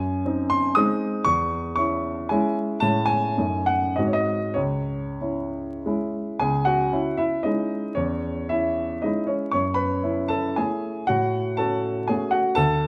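Close, detailed microphones catch vinyl crackle and a moderate recital-hall reverb around a warm, natural baby grand piano playing solo and up front in this wistful, nostalgic excerpt of a romantic classical dance in 3/4, its dotted rhythms and rubato drifting between 86 and 129 BPM in C# minor, tuned to A4 = 444 Hz and spanning C#2 to D#6, as the opening phrase returns at 6.4 seconds over harmonies that pass through Amaj7 and G#7 before settling on C#m, then moving on to F#m7.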